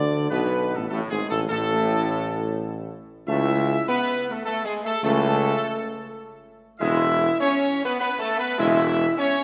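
Classical brass music at 102 BPM in 3/4, triumphant and solemn, cut from a longer piece. A tight, clear trumpet section carries the melody up front with light vibrato over sustained chords from a mellow, smooth-topped French horn section and a warm trombone section in the background, while a vintage-toned solo tuba holds the bass and calf-head timpani on medium mallets are barely audible until 0.6 seconds. The brass sits in a wet scoring-stage reverb with a faint mains hum as the harmony moves through D5, A/C# and E6.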